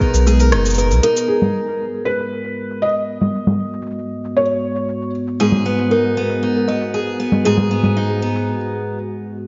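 Soaked in plate reverb and dulled above 7.5 kHz, this dreamy, autumnal and delicate folktronica fragment at 117 BPM in G# minor sets a felt-muted upright piano melody with audible action noise and a woody kalimba second line over a warbling, detuned tape-like pad, picked steel-string acoustic guitar arpeggios with tape echo, a round sub bass that sounds only until 1.0 s, and an organic electronic kit of congas, crisp hats, rim click and shaker, with a filter sweep on the pad from 1.3 s and a break at 8.5 s.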